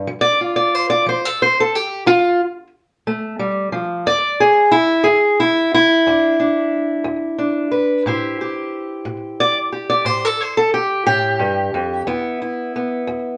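Acoustic country blues in a slow 12/8 with a mournful, smoky mood, this short cut from a longer piece features a lone fingerpicked steel-string parlour guitar, dark and boxy, up front with a slapback echo in a small room, ranging from low E2 up to D5 as it moves through F, E5 and Am7 before settling back on E5 at 12.1 seconds.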